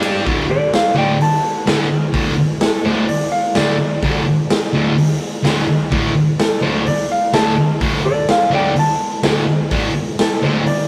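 A thick, double-tracked fuzz guitar sits up front, its bright, distorted picked riff growling low in a raw, swaggering garage rock groove in a straight four. Beside it, a raw garage drum kit of kick, snare, hi-hat and ride cymbal plays from the start, with a punchy kick, a medium-tuned snare and a saturated, gritty, warm sound whose rolled-off top pumps in a bright stone room. At 0.5 seconds a clean lap steel guitar enters with a fingered slide melody, its warm electric tone floating above the fuzz in a higher register. The whole excerpt is a single section cut from a longer piece, running on one D5 chord from 0.3 seconds onward. A moderate stone room reverb and a rough rehearsal-room recording give the performance an unpolished edge.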